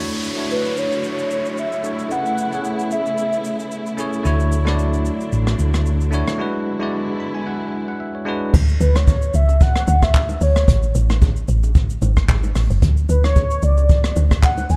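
A woody, punchy log drum bass dominates this relaxed amapiano excerpt once the drop lands at 8.5 seconds. Its fast-attack, decaying FM tone sits dark and up front beside a swung jazz brush kit with a boomy kick, dark cymbals, handclaps, rim clicks, hi-hat and shaker. Earlier, bright, bell-like tine electric piano chords and a lush bowed string section with expressive vibrato carry the opening, joined by an electronic downlifter and a velvety, detuned synth lead treated with chorus and delay. A round, hollow-body fingered electric bass appears briefly in the middle, and the electric piano plays a fill through the break before the drop. In the drop, acoustic congas and bongos sit in the background as the synth lead returns over harmony that moves from Dmaj9 through rootless F#madd9 and Bmadd9 voicings, all under light reverb.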